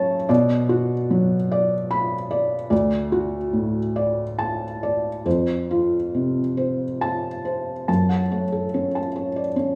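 A felt-muted upright piano carries this short neoclassical minimalist fragment alone, its tone dark and mellow, with thick felt softening every note and the mechanical noise of the action clearly audible. Placed up front and intimate, the instrument has a short sustain that keeps each chord close and muted, spanning from D2 up to B5. The mood is reflective and intimate, moving in a slow 6/8 at around 45-50 dotted-quarter beats per minute with a freely rubato feel, and the piano is tuned slightly low to A4 = 438 Hz. The harmony passes from B minor through D major and F major, then shifts at 7.9 s into a brief new section on F-sharp minor. A moderate recital-hall reverb surrounds the natural piano sound, and the passage, cut from a longer piece, closes at 9.8 s.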